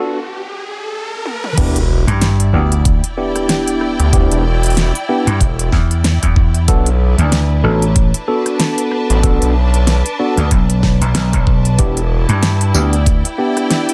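Lightly reverberant and high-passed, this playful, funky glitch hop excerpt at 94 BPM with a swung 16th feel opens on clean tine electric piano stabs through a combo amp, phased, pumping and dub-echoed, alongside an electronic riser and sub drop, then a tape-warm pop drum kit with fat snare and crisp hats enters at 1.3 s before the drop at 1.6 s brings a knocking electronic kick, a gritty, nasal, saturated synth bass up front, a punchy, amped vintage slap bass from 2.1 s and a lush, bowed symphonic string section pumping low in the mix over Bm7 and Em7 chords in E minor pentatonic.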